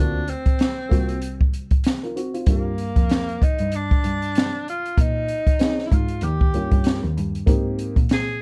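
A breathy, whispered tenor saxophone with scooped notes opens this cool, mellow jazz-hop excerpt at 96 BPM, alongside a worn, slightly detuned upright piano with audible action noise and plate reverb and a distant bowed cello bass with woody vibrato, before an up-front acoustic jazz kit with a boomy kick and high-tuned snare enters at 0.3 seconds, swinging in 4/4 over chords moving from D7#9b13 through Gm7, Bbm11 and Eb9 to Abmaj9.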